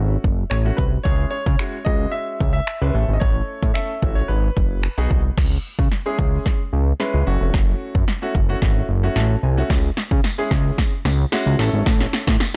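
A clear, intimate grand piano plays pumping chords over a fat, detuned sawtooth bass in this bittersweet yet energetic dance-pop excerpt in C# minor at 111 BPM, with an overdriven deep house kit of deep kick, punchy snare, metallic hats, finger snaps and crash joining at 0.2 seconds. A second piano voice carries a short melody with tape echo until 5.1 seconds, after which a drum fill drives a build-up, a brief piano fill passes, and a jingly, distant tambourine enters at 9.7 seconds. The mix sits in a small room with a dark production, the bass and drums up front and the piano's action noise audible.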